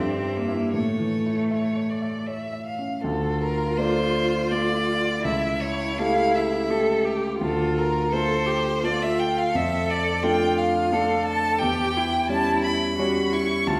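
A rich, smooth violin with vibrato carries the yearning melody up front, over an even, clear cello second line and the deep bass and long sustain of a warm concert grand piano, in a melancholic, slow romantic piano-trio movement in D minor, in 3/4 at 77-88 BPM with rubato, set in a recital hall reverb and cut from a longer piece.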